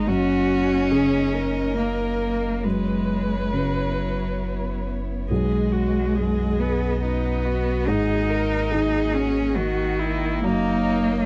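Neoclassical piano and strings in 3/4 with a rubato feel, this intimate, tender passage is cut from a longer piece and runs about 11.3 seconds. A clear, bowed solo cello carries the second line up front, its vibrato smooth and even though it sits at a slight distance. Beneath it, a dark upright piano gives woody, mellow accompaniment with a vintage, short-sustained tone, while a single viola adds expressive vibrato and portamento from further back. A rich chamber string section holds focused, sustained chords in the background, and a soft dub sub bass supplies a deep, round low end with a fast attack. The harmony moves from D#m7/F# through F#7sus4, B6 and G#sus2 before returning to D#m7/F#, all captured in a dry, close 1970s-style studio sound with light reverb.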